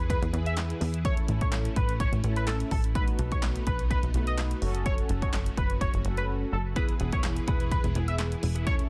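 Driving and confident, this dance-pop excerpt rests on a punchy, dry analog drum machine and a funky, wave-folded analog bass up front, while a bold, retro octave-doubled lead carries the melody with chorus, tape echo and sidechain pumping. Behind it sit dark, brassy synth brass chords, a vintage, warbling string machine voicing violas, and crisp group handclaps, set in a digital ambience with a dense, heavily limited master. After a brief silent gap that ends at 6.8 s, a clean, direct-recorded electric guitar riff enters in the background as the harmony returns to E.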